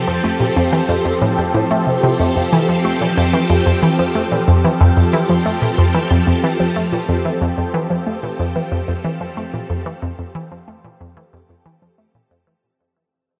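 A straight 4/4 pulse carries this luminous, cosmic stretch of sequencer-driven ambient space music, where an up-front, hollow square-wave pluck with a bouncy filter snap repeats its riff through chorus, phaser, delay and cassette-tape colouring. Alongside it, a swirling, vintage sawtooth string machine fades in from 0.0 s, holding bright, slow-attack chords on F with ensemble chorus and phaser, before a fade-out begins at 5.7 s and runs to 12.6 s. A huge, wet ambient reverb with a long tail surrounds both parts, giving this fragment of a longer piece a vast, drifting sense of space.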